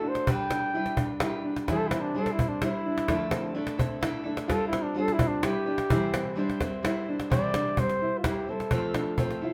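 Lightly reverberant, this short cut from a longer acoustic folk piece moves at a peaceful, gentle 128 BPM in 3/4, resting in C major. A mellow, smooth-topped flugelhorn carries the melody up front in a classical style, soloing from the start until 7.3 seconds over a dark, full-bodied picked steel-string guitar and the woody, faintly snared cajon that enters at 0.2 seconds. A clear, intimate upright piano, boxy with audible action noise, adds arpeggios as the harmony drifts from G through Cadd9 and Dmadd9 to C, touching F near the close.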